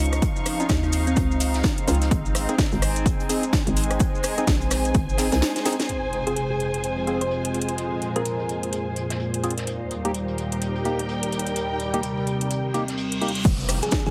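Heavily compressed and radio-like, this excerpt from a bass house track sits in a small, moderately reverberant room and moves at 127 BPM in F minor, with a 16th-note swing and a swaggering, aggressive mood. A punchy, overdriven electronic kick and a hollow, bouncy FM bass with tube saturation and sidechain pumping sit up front. They drop out shortly before the second section arrives at 5.9 seconds and return at 13.4 seconds. A layered house kit with cracking snare and metallic hats adds overdriven grit, joined by a very quiet acoustic kit played with bundle sticks and grainy maracas in the background. A bright, evolving, resonant sawtooth pad holds sustained chords throughout, moving from Dbadd9 and Ab to Fm and Eb, while a dark, woody string section bowed sul tasto adds a lush ensemble texture. A ring-modulated organ stab with chorus and delay punctuates the groove, and a round, tine-like pluck resembling a thumb piano plays a short, gentle melody in brief fragments. 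An impact, a reverse cymbal and a downlifter mark the section changes.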